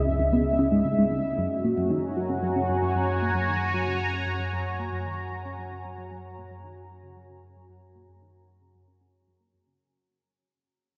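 A resonant, detuned pad with slow-attack filter swells and a round, deep sine sub bass open this expansive, cosmic ambient space-music excerpt at 114 BPM in 4/4, joined at 0.1 seconds by a tight, driving sequenced synth riff with wave-folded sawtooth plucks, chorus, phaser and analog delay, all over C#m7 and F#6 chords in a vast cathedral reverb as the synth arpeggio fades out across the 9.8 seconds.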